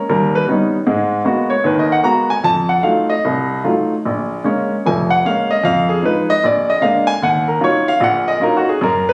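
Swung eighths at 152 BPM in 4/4 with a rubato feel carry this smoky, late-night jazz fragment in Eb minor, played by a solo baby grand piano, cut from a longer piece and lasting 9.1 seconds. The piano sits up front with a warm, natural tone and short sustain, ranging from F1 to Bb5 through a progression that moves from Ebaug7 and Abm9 via F7b9 and Bbm7 to a closing Ebm9. Light reverb surrounds the instrument, which was captured on a phone in the room.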